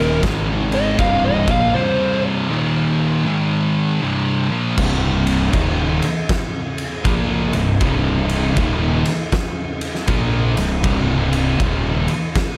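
This heavy, hypnotic stoner and doom metal excerpt, in C minor at a slow 79 BPM in 4/4 with a swung eighth-note feel, opens on a dark, compressed fuzz lead guitar with slapback echo, sitting high over a wall of riffing guitars and bass. That lead melody lasts only until 2.2 seconds, while the oversized, low-tuned acoustic drum kit enters at 0.2 seconds, up front and saturated, with a punchy kick, fat snare, dark crash and ride cymbals, and a gritty, pumping big-room sound. Beneath it, two thick fuzz guitars, one shadowy and one mellow, join a bright, double-tracked high-gain guitar to play the low riff in the background. A growly, overdriven fingered electric bass with fuzz sits up front, direct and amped, anchoring the lowest register. The harmony moves through Ab, C and Eb before settling on C minor at 4.8 seconds, and a studio reverb gives the whole mix a roomy weight until the drums ring out at 12.6 seconds.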